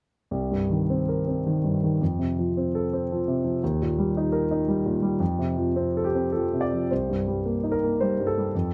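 Neoclassical minimalist piano in C dorian, melancholic and wistful, where a solo concert grand with deep bass and short sustain plays up front from 0.3 to 8.7 seconds in a rubato 3/4 around 101-116 BPM, moving through Cm7, F and Eb before returning to Cm7 at 6.9 seconds, captured by close, detailed microphones with little reverb in this fragment cut from a longer piece.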